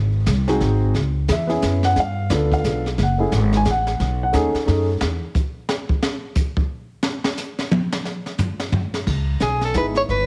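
Heavily compressed into a radio-like sound with moderate studio reverb, this smoky, swinging small-group jazz excerpt in 3/4 pairs woody, thumpy gut-string pizzicato upright bass and an intimate baby grand piano with audible action noise against brushed drums with dark cymbals, a high-tuned snare and a boomy kick, which take a drum solo from 5.0 to 9.1 seconds before a breathy, clear soprano saxophone with vibrato enters at 9.4 seconds.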